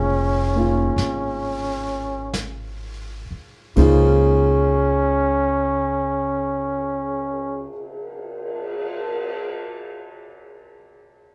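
A tender, intimate jazz ballad excerpt in a slow swing, cut from a longer piece and slowing down over its first 3.8 seconds as it opens on a lush major-seventh-family chord. A cup-muted trumpet carries the melody up front, veiled and breathy with light vibrato and a plate reverb, over a clear, woody upright piano that plays on after the trumpet and the dark, growly pizzicato upright bass stop at 7.7 seconds. A vintage brush kit sits quietly in a small-room sound from 1.0 to 9.3 seconds, adding brushed snare, hi-hat, ride, a cymbal swell and a punchy kick, while the whole group is heard from further back in a wet studio space.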